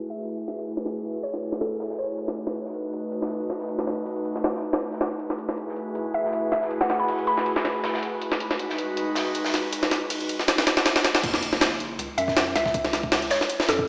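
Heard as if through a big sound system in a bare stone room, dulled and small-speakered yet bathed in lush hall reverb, this frenetic, atmospheric drum and bass and jungle fragment runs at 159 BPM in F# dorian, with a filter sweep running through its first eleven seconds. A bright, breathy, detuned pad holds chords up front with vintage sampler grit, while a woody, warbling FM pluck drifts in short melodic phrases through chorus and dub echo. A compressed, pitched-up sampler kit with a thumpy kick and high-tuned snare sits up front over a saturated, rolled-off acoustic breakbeat in the background, and at 11.2 seconds the pad gives way to a drop where a round, soft sub bass enters alongside a very quiet electronic sub drop.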